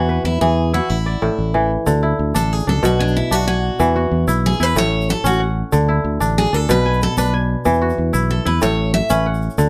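Close, detailed microphones and light reverb frame this hypnotic, warm excerpt of West African string and xylophone music in 12/8. A ringing, crisp kora spins arpeggios up front over a punchy, direct fingered electric bass, while a bright picked steel-string acoustic guitar carries the melody. The guitar takes a solo from 1.9 seconds, as a grainy egg shaker joins in the background, and it falls silent at 9.2 seconds.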